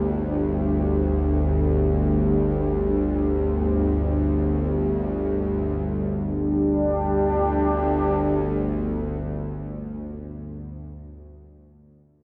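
Dark ambient drone in free time, this desolate fragment is cut from a longer piece and tuned slightly sharp to A4 = 444 Hz. A string-like, bowed-like drone sits up front from 0.0 to 10.2 s in the low register between G1 and D2, its detuned sawtooth unison carrying a tense edge, a layer of noise, vibrato and its own built-in reverb. Above it, a sweeping resonant pad holds sustained chords between G3 and G4 until 10.4 s, built from detuned sawtooth tones with a filter swell and chorus that give it a bright, evolving shimmer. Both parts fade in slowly and linger on long releases, so the sound feels suspended rather than pulsed. The harmony rests on a G5 chord from the start, while the music passes from one section into a second at 5.8 s. A wet plate reverb with a 3.1-second decay surrounds the whole, deepening the dark, desolate mood.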